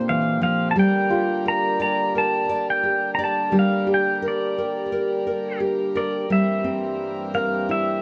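This short cut from a longer acoustic folk-pop ballad centres on a bright, twangy pedal steel guitar carrying the melody up front, its clean, compressed tone shaped by fingerpicks, slide and volume swells. Beside it, a full-bodied nylon-string guitar is fingerpicked in a deep classical manner, giving the accompaniment a rich acoustic grounding. Underneath, a reedy, breathing pedal harmonium holds mellow sustained chords, while a felt-muted upright piano adds soft, intimate arpeggios in the background, its thin felt, short sustain and audible action noise lending a close, homely texture. The piano drops out at 4.8 seconds, leaving the guitars and harmonium to move from Bbadd9 through Gm toward a C7/G chord at 6.3 seconds. Light reverb surrounds the whole, and the mood is heartbroken and reflective.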